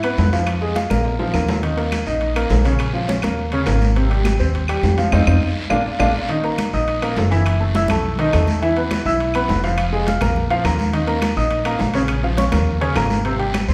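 Festive, danceable salsa at a brisk 207 BPM, cut from a longer piece, where a clear, present grand piano comps through chords like Fm, Bbm, Abmaj7 and Gbm7 up front beside a dark, thumpy pizzicato upright bass, while bright congas, ringing metal-shelled timbales and woody claves sit in the background alongside a raspy, vintage-toned guiro, with drum fills at 0.9 and 5.4 seconds and a full-band accent at 5.1 seconds, all captured as one band playing live in a large, reverberant studio.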